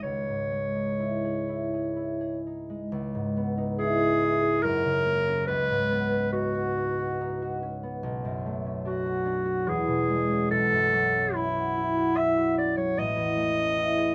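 A clear, roomy clarinet, distant in tone yet placed up front, sings a classical-style solo melody over a mellow, ringing fingerpicked concert harp in this hazy, mysterious impressionist duo in C# minor, drifting in a rubato 3/4 at 62-75 BPM through chords from C#madd9 to a closing Amaj7#11, captured with close, detailed microphones and light reverb in a fragment cut from a longer piece.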